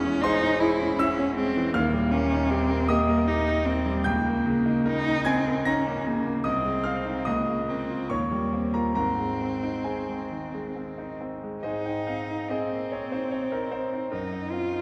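In a rubato 3/4 that drifts between 66 and 81 BPM, this lyrical, tender romantic duo in Ab major unfolds with a rich cello melody, bowed by one player with vibrato and a smooth, even line, over a bright, brilliant concert grand piano accompaniment with deep bass. Both instruments sit up front and play throughout, though the wet concert hall reverb places the listener further back in the room. The harmony moves from a darker Dbm/Fb opening through Eb colours to settle on Ab before a new section begins at 11.6 s and closes on a rootless Ab13/Gb.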